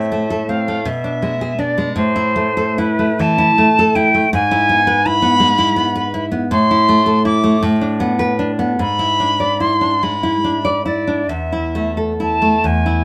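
Solemn and yearning, this short passage from a longer romantic duo moves slowly and freely in 6/8 at around 44-56 dotted-quarter beats per minute, tuned to A4 = 436 Hz. A pure, tongued silver concert flute with vibrato carries the melody, while a full-bodied nylon-string guitar with fresh strings fingerpicks the accompaniment, its finger squeaks audible as the harmony circles from A minor through a G# diminished chord to E7 over G# and comes to rest on an Esus4. Both instruments sit up front, and a light reverb softens the space around them.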